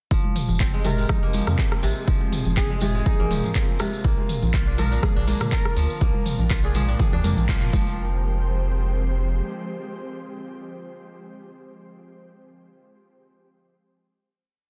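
A fingerpicked kora, a deep round sub bass, a punchy overdriven four-on-the-floor kick and close, jingly hand-played tambourine sixteenths open this driving, hypnotic afro house piece at 122 BPM in F dorian, with bright acoustic congas and a dark-hatted deep house kit of claps, rim, open hat and low tom following. Over a repeating kora step sequence with dub echo and a syncopated bass riff, all pumping against the kick, an ethereal, warbling pad of detuned saws sustains chords from Fmadd9 to Bb, while a smooth portamento lead with vibrato and tape-tinged chorus sits in the background with short phrases. After a band accent at 7.5 seconds, the drop gives way to a final hit at 8.0 seconds, where the pad and kora ring on in a dense, heavily limited mix.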